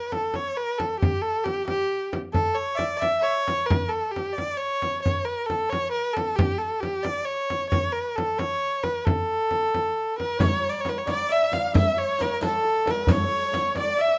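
A steady 6/8 pulse at 89 BPM, felt in dotted quarters, carries this passionate, stately Persian modal ensemble piece in A dastgah homayun, cut from a longer performance. A clear, focused solo erhu leads up front with vibrato and portamento under plate reverb, over a deep, close frame drum. At 10.2 seconds a bright, shimmering santur and a very quiet, smooth violin section join on a second line, followed at 10.4 seconds by a tight, soft-handed tombak and distant riq jingles, all within a dark production and a moderate studio room.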